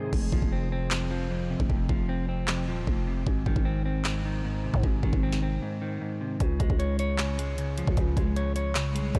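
Hip hop trap in F minor at 153 BPM with a half-time feel, hard-hitting and melancholic, where a very quiet, fingerpicked concert harp rings out only until 1.8 s over a dark, clean electric guitar, a growling, buzzy, saturated 808-style bass, and an up-front electronic kit of knocking kick, sharp snare, handclaps and crash, whose bright hi-hats stay muted until 6.4 s following a break at 5.6 s, set in light reverb.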